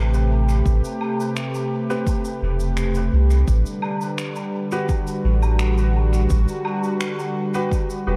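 A straight 4/4 pulse at 85 BPM carries this meditative, spacious ambient dub fragment, where a smooth, detuned analog pad with chorus holds sustained chords from Am9 to Gmaj7/A over a round, mellow sub bass, while distant, roomy cabasa, woodblock and finger snaps drift through dub echo, a deep layered electronic kick enters at 0.7 seconds, and a woody upright piano adds polished stabs with subtle chorus and dub echo from 1.9 seconds, all in a light studio reverb.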